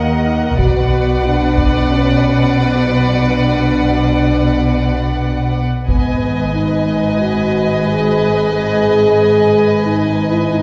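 An epic, dramatic orchestral film-score passage opens with the full string body and horns sounding together, moving at 91 beats per minute in a broad 12/8 and cut from a longer piece. The violins split into two lush, bowed lines, a smooth and even melody on top and a more focused second line beneath it, both shimmering with vibrato above a viola section whose expressive portamento colors the accompaniment. A mellow, tightly blended French horn section holds sustained chords prominently in the middle, while expressive cellos and a clear, distant-sounding double bass section anchor the bass. Heavy-stick taiko drums, close and dry, strike in two short bursts, first at 0.6 seconds and again at 5.9 seconds, as the harmony shifts through dark minor chords from Ebm to Bm to Abm. The whole ensemble sits back in a reverberant scoring-stage space that lends it grandeur and depth.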